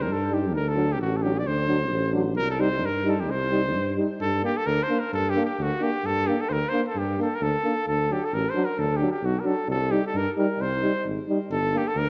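Heard through worn, warbling cassette tape with a wet recital hall reverb, this restless, virtuosic Balkan brass band clip at 131 BPM in 2/4 sets a clear, vibrato-laden trumpet melody with tape echo up front over a roomy tuba bass, while a mellow French horn and a vintage-toned euphonium add light-vibrato accompaniment in the background from 0.3 to 11.8 seconds, moving through Cm, D and Gm.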